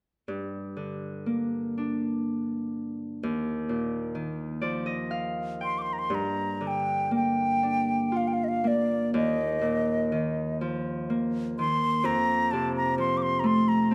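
Celtic folk slow air in G minor, longing and haunting, moving at 61 BPM in a rubato 3/4 with uneven beats, with a lush recital-hall reverb around it. A bright, ringing fingerpicked Celtic harp opens alone from 0.3 s, sitting up front over Gm and Ebsus2 chords and adding a fill at 4.2 s. At 5.6 s a close-miked wooden flute enters up front with an airy, woody tone, tongued notes and vibrato, carrying the melody over Gm7 and Ebsus2 before the harmony turns to F at the end of this cut from a longer piece.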